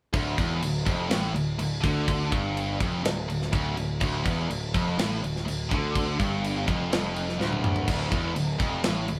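A straight 4/4 pulse at 124 BPM drives this menacing, heavy hard rock passage in D minor, where an up-front tight distorted guitar and a compressed, bright, picked second guitar set further back play a low riff over a fuzzy, punchy overdriven electric bass, while an acoustic metal drum kit with a tight kick, medium-tuned snare, toms and crash cymbal adds a fill at 7.4 seconds, all captured as a band playing live together in one room with moderate studio reverb.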